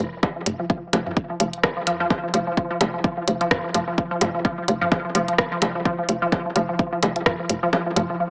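A resonant blip pluck, squelchy and nasal with chorus, analog delay and sidechain pumping, repeats a bright riff on F3 up front through this cool, hypnotic minimal techno excerpt at 128 BPM in 4/4 with a 57% swing on the 16ths. A hollow, bouncy FM bass knocks between F1 and F2 under the same pumping, while a layered, punchy kick, an analog drum machine playing hi-hat and rim click, and tape-warm electronic bongos and toms with delay arrive by 0.5 seconds. The mix is echo-heavy, with a wet spring reverb and a small-speaker sound, and the kick drops out at 7.7 seconds before the cut.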